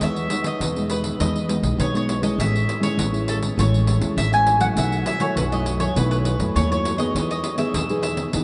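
An up-front, picked mandolin with double strings carries a joyful, playful melody in this 8.4-second samba and choro excerpt at 101 BPM in E major, over a thumb-plucked classical nylon-string guitar, a woody, thumpy pizzicato upright bass and a jingly, compressed, saturated pandeiro played with hard hands, all moving through Emaj7, Amaj7 and B7sus4 and bathed in the long, echoing reverb of a vast cathedral with a dulled top end.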